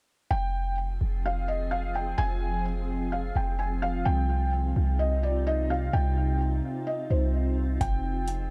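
A felt-muted upright piano and a deep 808-style bass open this short cut from an atmospheric cloud-rap track in F minor, moving at 128 BPM with a half-time feel. The piano carries the melody in its upper register, soft and intimate under thick felt, with audible action noise and a touch of delay. A glassy FM pad arrives at 1.1 seconds with slow-blooming sustained chords, given an ethereal sheen by ensemble chorus, phaser and its own reverb, and pumping against the sidechain. Beneath it all, the boomy sine-based bass sits up front with a dark noise layer and fast, decaying notes, while the harmony moves from Fmadd9 to Cm and back. Only at 7.8 seconds does a booming analog drum machine appear, with a deep kick and metallic, tape-tinged hi-hats, in an otherwise dry, spacious and melancholic mix.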